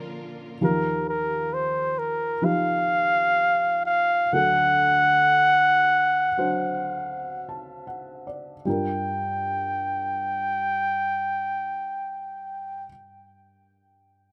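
A melancholic, heartbroken pop fragment in G minor opens with a soft, thick-felted upright piano and a brief, lush bowed string chord that stops at 0.6 seconds, when a clear, close-miked flugelhorn with light vibrato takes the mournful melody up front over the dark, intimate piano as the slow 4/4 pulse of 49-67 BPM gradually eases, with a felt piano fill arriving at 6.9 seconds before the music settles onto a Gm7 chord at 8.7 seconds, all in a rough home demo mix with a touch of reverb.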